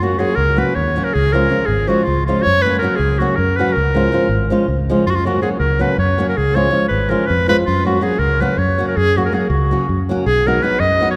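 In a straight 7/8 pulse, this Balkan wedding-band folk fragment from a longer piece feels festive and wild. A bright, classical-style clarinet carries the solo melody up front, over a fingerpicked flamenco guitar with fresh strings and a warm acoustic tone, also up front. A round, foam-muted fingered electric bass, direct and amped, underpins them. The harmony rocks between two chords before shifting to a new one at 10.3 seconds, all bathed in the long, wet reverb of a church.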